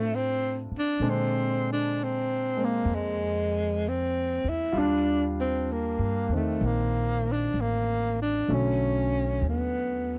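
A breathy, close-miked tenor saxophone carries an intimate, romantic jazz ballad melody with subtone and vibrato, set up front over clear concert grand piano accompaniment with deep bass and a woody pizzicato upright bass, all three playing together throughout this short swung passage, which moves from Fmaj7 through Bb9 and Ebmaj7 to Bm7 in a dry, close 1970s-style studio sound.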